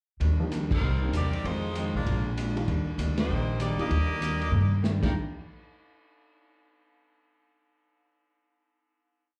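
Heard as a live gig through the venue's PA, this short big band swing piece carries a club reverb around an energetic, joyful performance in Eb major at 194 BPM, swung in 4/4. From 0.2 seconds the rhythm section starts together: a woody, up-front pizzicato upright bass plays a two-feel line; a clean, picked electric hollow-body guitar strums four to the bar in jazz chord shapes; and a lo-fi, muffled drum kit keeps a ride cymbal pattern with dark cymbals and a tight kick. A warm concert grand piano follows, comping in syncopated rootless voicings with audible action noise and a slapback echo. At 0.7 seconds an edgy, close-miked saxophone section takes the melody in four-part block harmony, with light vibrato and motif-based call phrases, also carrying a slapback echo. The band punches out accents over a Ebmaj7–Cm7–Fm7–Bb7 progression, and after a drum fill the piece ends on a final hit at 5.1 seconds.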